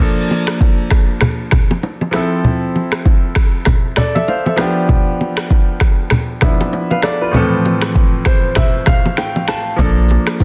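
Afrobeats at 98 BPM in F major with a swung sixteenth feel, joyful and romantic, opens on a clear, polished concert grand piano moving through Bbmaj7, Fmaj7 and G7 chords, joined by bright, close, dry bongos and congas and an overdriven electronic afro-pop kit of deep kick, finger snaps, rim click and shaker, the piano adding a fill from 8.0 s before a deep, punchy sine sub bass with a pitch-drop attack lands at 9.8 s under a dense, heavily limited modern master.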